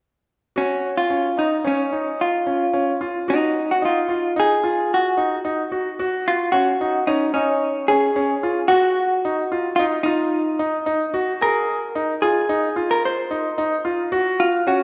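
A dark, clean, compressed hollow-body jazz guitar carries the melody up front, set against a brilliant concert grand piano playing arpeggios with natural depth in the bass. This bright, driving progressive instrumental moves in a straight 5/4, with the two parts playing together from 0.6 seconds through a passage shifting through Ebmadd9 and Fm7 before returning to Gb5 at 14.1 seconds. A lush hall reverb bathes the rough home demo mix, and the clip is cut from a longer piece.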